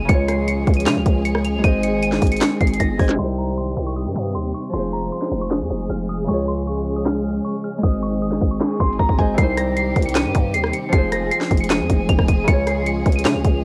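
A glassy FM synth bell carries a crystalline, warbling melody high in the register from the very start, joined at once by a ringing, fingerpicked Celtic harp under plate reverb, lush bowed strings holding sustained chords with vibrato and portamento, and a growling, buzzy 808-style bass. This brooding, melancholic trap cut from a longer hip hop piece moves at 155 BPM in a half-time feel, sitting in C phrygian as the harmony cycles through Db, Ab, Cm and Fm. The electronic drum kit sits up front and loudest, with a hard-clipped kick, sharp snare, handclaps, rim clicks and warm hats re-recorded in a small room. A drum fill at 2.8 seconds leads into a middle passage from 3.2 to 9.4 seconds marked by a filter sweep, before the opening material returns. The vintage chorus and tremolo on the bell contrast with the expressive, smooth-topped string ensemble, all set in a modest small-room ambience.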